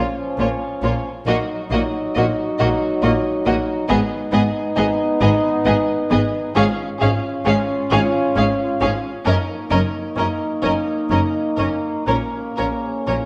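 Flowing in a loose, rubato 6/8, this cinematic fragment of a longer piece moves with a slow, breathing sway and a moving, longing mood. A French horn section sits up front with warm, roomy sustained chords, while a dark, woody violin section carries the high melody with vibrato and a second violin section adds a smooth, even line beneath it. From 0.4 seconds a distant viola section joins with expressive portamento, and a lush cello section and a close, soft-attacked double bass section bring a rich, bowed low end, the cellos sitting in the background. The harmony shifts slowly through minor and major chords before settling on a sixth chord and returning home near 12.1 seconds. A moderate scoring-stage reverb surrounds the ensemble, and the whole recording carries the worn, warbling character of old cassette tape with a wavering pitch drift.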